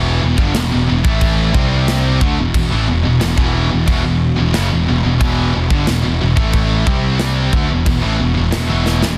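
Three bright, distorted electric guitars open this dark, aggressive heavy metal excerpt at 90 BPM in E minor: one heavy and high-gain, one scooped, high-gain and double-tracked, and one tight. They play a picked riff in the background beneath an up-front, growly, fuzz-overdriven picked electric bass. A polished, airy acoustic studio kit with a punchy kick, medium-tuned snare and crash cymbal joins at 0.4 seconds and adds a fill at 8.9 seconds, inside a dense, heavily limited, nearly dry modern master.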